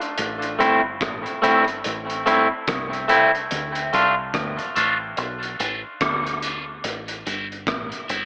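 Hypnotic and spacious, this short dub reggae cut from a longer piece rolls along with a lazy swing over a minor-key change that moves from Am to Dm and back. A crunchy breakbeat drum kit opens it, its hi-hat, rim click and punchy kick sounding gritty and saturated with a rolled-off top, trailed by tape echo. From 0.2 seconds a deep, fingered electric bass sits low and round in the mix, dark and foam-muted, holding the bottom with a punchy, direct tone. An electric guitar at the edge of break-up joins at 0.6 seconds and stands up front, twangy and fingered, thinned by a high-pass filter and thrown into tape echo, while a filter sweep runs across the clean guitar sound throughout. A wet spring reverb and an echo-heavy, AM-radio-style mix give the whole piece a boxy, drifting atmosphere.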